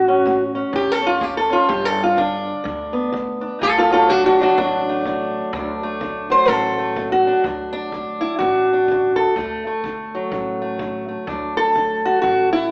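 A boxy, up-front fingerpicked steel-string acoustic guitar carries the melody in this swaggering, gritty acoustic country blues excerpt in D major at 125 BPM with a swung 4/4 feel, taking a solo through the first 7.4 seconds over chords moving from A to G to D, while a woody, thumpy pizzicato upright bass sits in the background and a very quiet, punchy brushed kick drum enters at 0.3 seconds, all heard through a recital-hall reverb and an AM radio sound.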